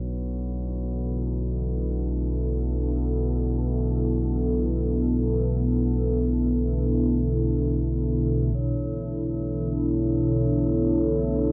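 In free time and B minor, this cavernous, unsettling dark ambient drone excerpt opens on a Bm(add9) sound as a deep rumbling drone, warbling and wave-folded with its own built-in reverb, fades in up front from 0.0 s, and a bright quartz singing bowl rings with slow beating in the background. At 0.7 s a moody, detuned analog pad enters with sustained chords, its sawtooth tone thickened by chorus and phaser. From 8.5 s a filter sweep moves across the drone, all of it set in a huge ambient reverb with a long 8.1-second tail.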